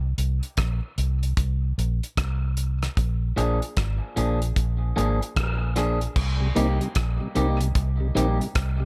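Hypnotic and deep, this short dub reggae excerpt in C minor moves at 75 BPM with a swung sixteenth feel, built on a round, foam-muted fingered electric bass and a damped 70s drum kit with dark cymbals and a tight kick, joined at 3.4 seconds by a slightly broken-up picked electric guitar under a low-pass filter and dub echo, and at 6.4 seconds by a flute-like tonewheel organ with key click and slow rotary speaker as the chords shift from Bbsus2 and Bb7 to Cm7, all in light reverb.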